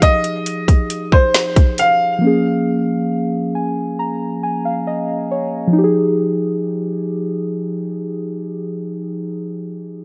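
A clear, short-sustained baby grand piano melody with digital delay, muted felt-like synth keys with a dark, warbling chorus, and an up-front trap kit of hard-clipped kick, woody snare and metallic hats roughened by vintage 12-bit sampler grit open together in a late-night, longing contemporary R&B fragment at 68 BPM in F minor, moving from Fm9 to Bbm7/F, as the drums drop out at 2.0 seconds, the synth keys add a fill from 3.1 seconds, and after the piano stops at 4.8 seconds the keys carry on alone in digital ambience.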